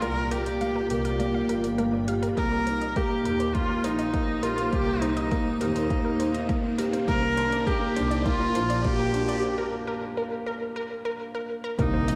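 A dreamy, reverb-soaked mix opens this melancholic, hypnotic excerpt of piano and strings electronica, with a clear, smooth viola melody carrying vibrato up front through a diffuse delay over a felt-muted upright piano riff, whose dark, intimate tone shows audible action noise under lush chorus. A cloudy granular pad sustains Gm7 and Cm7 chords very quietly, while a warbling, detuned sawtooth pluck plays arpeggios in the background and a bowed, reedy double bass section with gut-string tone pumps beneath them. Metallic, overdriven electronic hi-hats run throughout, a deep overdriven kick enters at 2.4 s, and an electronic riser from 4.7 s gives way to a break at 9.4 s before an impact at 11.8 s.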